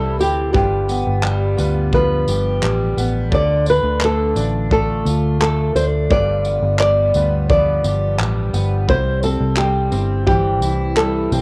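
A straight 4/4 groove from an airy, polished country drum kit of handclaps, tight kick and tambourine, coming in at 0.2 s with a cassette tape tint, carries this sunny, easy-going acoustic pop excerpt, where an up-front, thumb-plucked flamenco guitar, also cassette-tinged, carries the melody over a double-tracked, full-bodied jumbo steel-string guitar, a clear concert grand piano sitting in the background, and a dark, round, punchy, foam-muted vintage electric bass, set in a small room with light reverb on a home cassette recording.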